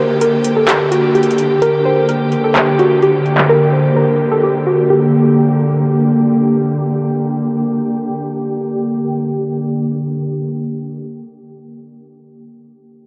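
A dreamy, reverb-soaked mix with a huge ambient wash, a dulled low-passed top and lossy artefacts frames this dark, hard-hitting trap excerpt in G harmonic minor at 128 BPM in a half-time feel, resting on a G minor chord under a filter sweep. A soft, round, wave-folded pluck carries the melody through chorus and a diffuse delay until 5.3 seconds, while a close, intimate string section bowed sul tasto with light vibrato holds dark sustained chords throughout. A booming, overdriven analog drum machine with handclaps and metallic hi-hats, sounding re-recorded in a small room, drives the opening break from 0.2 to 3.5 seconds.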